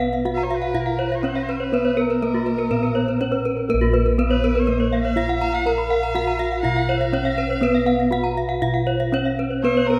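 Bronze metallophones and bossed gongs open this shimmering, ceremonial Balinese gamelan passage at 122 BPM in Bb pelog: one metallophone carries the melody under a wooden mallet, another plays close-miked, dry, bright arpeggios with a horn mallet, and a third adds further horn-mallet arpeggios, all with paired tuning that makes their ringing tones beat. Beneath them the gongs supply a round, mellow, airy bass from padded beaters, while from 0.3 s a single clear erhu bows a smooth second line with light vibrato and portamento. A moderate scoring-stage reverb surrounds the ensemble in this fragment cut from a longer piece.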